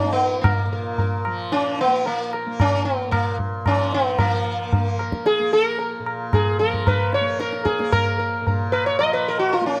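Solemn and longing, this Hindustani classical excerpt in raga bhairavi on Bb moves at 112 BPM in a straight 7/4, with a softly plucked tanpura drone murmuring low beneath everything. Up front, a plectrum-plucked sitar carries the melody with a round, buzzing tone, its sympathetic strings shimmering through a plate reverb, while a low-tuned tabla enters at 0.4 s sounding ringing, close and dry. The dark, warm production sits in a modest small room, and the music shifts into a new section at 4.2 s.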